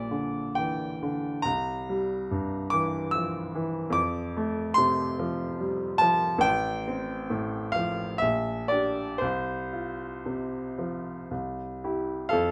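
Tender and serene, this short excerpt cut from a longer romantic nocturne for solo piano moves in an unhurried, rubato 3/4 around 56-75 BPM in F major, tuned to A4 = 436 Hz, with a warm, polished grand piano sitting present and up front in light reverb as it ranges from low bass to bright upper notes through gently shifting harmonies that settle on F at 4.0 seconds and close on C at 11.3 seconds.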